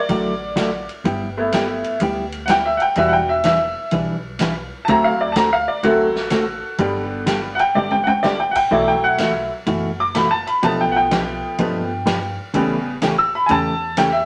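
Cheerful and playful, this swinging western-swing excerpt features a bright, intimate upright piano soloing up front with audible action noise, backed by a dark, clean hollow-body jazz guitar, a woody pizzicato upright bass and a distant, roomy big-band drum kit that plays a short fill at 7.8 seconds, all set in a wet studio reverb.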